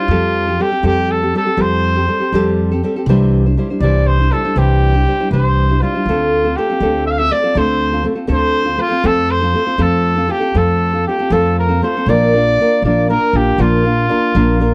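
A clear, distant trumpet sings a proud, festive solo melody over a full-bodied, fingerpicked nylon-string guitar from the very start, with a woody pizzicato upright bass joining at 0.1 seconds in this mariachi-flavoured Mexican folk passage in 6/8. The harmony moves through Fadd9, Cadd9, Dm7 and F before shifting to a Bb at 12.1 seconds. The dry, close 1970s-style studio sound keeps all three players up front, with the trumpet carrying a roomy classical tone, in a fragment cut from a longer piece.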